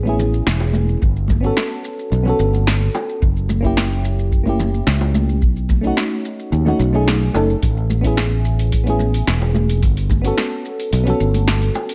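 This short excerpt of sunset chillout has a light, digital ambience with a touch of reverb, setting a blissful, relaxed mood at 109 BPM in a straight 4/4. Up front, a mellow FM electric piano carries the accompaniment with a soft, warbling vintage tone, its fast attack decaying into a chorus-and-delay shimmer over a faint noise layer. A fretless electric bass sits equally forward, dark and round with tube saturation, moving through chords like Amaj7, Gmaj9#11, F#7b9 and B7. A layered deep house kit adds a punchy snare, metallic hi-hats and shaker with an overdriven edge, while congas and bongos played with soft hands stay in the background, band-limited and vintage. A deep analog-style electronic kick enters at 1.0 seconds and drops out at 10.2 seconds, grounding the groove for most of the passage.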